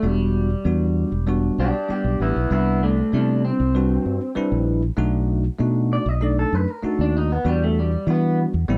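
Straight-eighth soul blues with a soulful, mournful mood, cut from a longer piece, where a twangy, slightly broken-up electric guitar through a small old amp carries a picked melody with subtle chorus over a bell-like tine electric piano drenched in lush chorus and a round, dark fingered electric bass sitting up front, all captured in a dry, close 1970s-style studio sound as the chords move from Em7 through Cmaj7 and B7#9 back to Em7.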